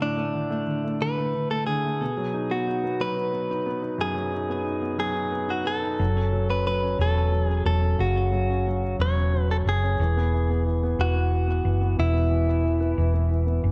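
A six-eight pop ballad with a swaying, romantic mood, this short excerpt is cut from a longer piece and moves through chords from D5 to B, F#m7 and E5. A clean electric guitar, recorded direct and picked with a compressed, up-front tone, carries the melody in a middle register, colored by spring reverb and digital delay. Beneath it, a clear concert grand piano plays the accompaniment from the opening, intimate and polished, with deep bass, long sustain and audible action noise. At 6.0 seconds a hollow-body short-scale electric bass enters, fingered low and round, its amped, dark sound sitting prominently in the mix. The production is dark and warm overall, set in a small room ambience with light reverb.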